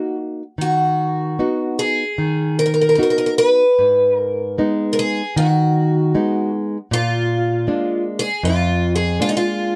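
Mournful and passionate, this brief fado-style ballad fragment drifts in free rubato around 72-80 BPM in 4/4, as a bright, shimmering, octave-doubled twelve-string acoustic guitar picks the melody up front over a dark, fingerpicked nylon-string guitar with audible finger squeak, both guitars playing throughout and captured by close, detailed microphones with little reverb as the harmony moves from Ebm through Abm to Bb7.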